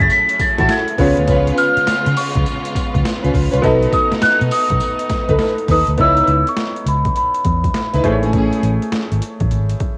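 A bell-like, ringing celesta carries the melody through this punchy, slick new jack swing groove with a swung sixteenth-note feel, over round, foam-muted fingered electric bass, gritty overdriven sampler-style drums with a thumpy kick, high-tuned snare, hi-hat and tambourine, veiled con sordino string stabs, lush distant sustained string chords that drop out at 6.0 seconds, and a clear, short-sustained grand piano, all set in spring reverb with a homespun cassette tape character.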